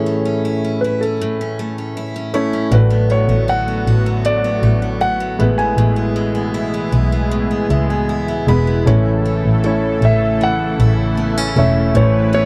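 A dry, close recording in a small room gives this heartfelt, emotional pop excerpt a 1970s studio intimacy, with the mechanical action noise of the concert grand piano audible up close. At 78 BPM in 4/4 with a straight feel in A major, the piano carries both the melody, its long-sustaining, polished voice touched by tape echo, and a vintage-toned accompaniment with deep bass and short sustain. A bright, full-bodied steel-string dreadnought picks arpeggios throughout, with finger squeak on the strings. At 2.7 seconds a lush, thick unison pad of detuned sawtooth tones enters with sustained, nasal chords and chorus, while a bowed double bass played sul tasto sits up front with a pure, floating tone and soft attack. The harmony moves from A through Bm7/A and E/A, a piano fill at 7.3 seconds leads into a new section, and the music returns to A at 8.9 seconds.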